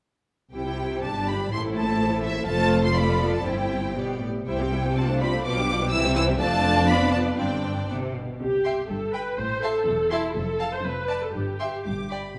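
At 0.5 s a string orchestra sets off together in a quick, spirited classical-period movement in C major, moving in 2/4 at roughly 117 to 128 BPM with a lively rubato give to the pulse. The first violins carry the melody high in their register, lush and expressive with a soft attack and vibrato, while the second violins trace a smooth, even second line that sits a little further back. The violas fill in the accompaniment up front, singing with vibrato and expressive portamento. Underneath, a focused, clear-toned cello section and a rich double bass section share the bass line. The harmony moves from C through G and A minor to F, touching a suspended G before resolving. At 8.4 s the opening phrase returns, all within the gentle bloom of a moderate scoring-stage reverb, before this short cut from a longer piece breaks off around 12.4 s.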